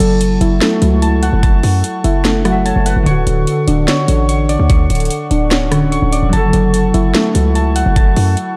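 A half-time 147 BPM trap beat, with a knocking kick, sharp snare and metallic hats from a tape-warm drum kit over a punchy, heavy 808-style bass, drives this melancholic, eerie hip hop excerpt in F# minor, where a ringing, fingerpicked concert harp and round, warbling electric-piano-like synth keys playing arpeggios with chorus and delay are joined by a breathy, detuned pad as the chords move from F#m7 to Dmaj7 at 3.1 s and back, framed by dark production and light reverb.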